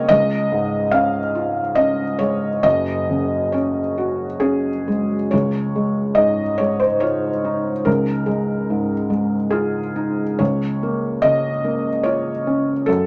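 A felt-muted upright piano plays alone through this short passage, its soft, mellow tone sitting up front in an intimate, close sound. The style is neoclassical minimalist piano in Db major and 3/4 time, moving with a rubato feel at roughly 64 to 74 BPM. The mood is peaceful and tender, with the piano reaching from Gb1 down low to F5 up high. Harmonies shift from Db to Gbsus2, then Dbadd9 arrives at 5.3 seconds to open a second section, and Bbm/Db follows at 10.4 seconds. A moderate studio reverb gives the muted instrument a gentle sense of space across this brief cut from a longer piece.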